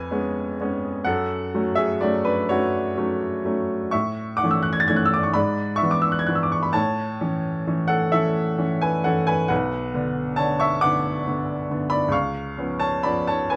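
A yearning, mournful mood hangs over this brief passage from a romantic classical nocturne for solo piano, cut from a longer piece and moving in a slow six-eight with free, rubato timing. A clear upright piano carries everything on its own, its tone woody and natural, sitting up front in close, detailed microphones with light reverb around it. Its range reaches from B1 in the bass up to A6, giving the writing a deep foundation beneath its highest notes. The harmony opens on C#7 over E#, settles into F# minor at 1.0 seconds, then drifts through A, E7 over G# and A again before turning to B minor at 9.5 seconds and resting on C#7 at 12.1 seconds, leaving the phrase suspended and unresolved.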